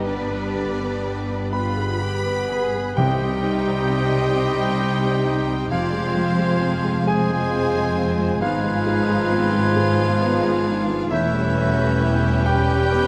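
A lush, expressive violin melody opens this sorrowful, moving cinematic film-score excerpt in C harmonic minor, drifting in rubato 6/8 at 44 BPM over a focused second violin line, smooth violas, a long-sustaining baby grand piano, mellow French horn chords, and bowed cellos and double basses, with a distant solo clarinet entering at 0.1 seconds and a bright flute group, a lightly vibrato oboe and a round, very quiet timpani joining at 3.0 seconds, all set in a moderate scoring-stage reverb.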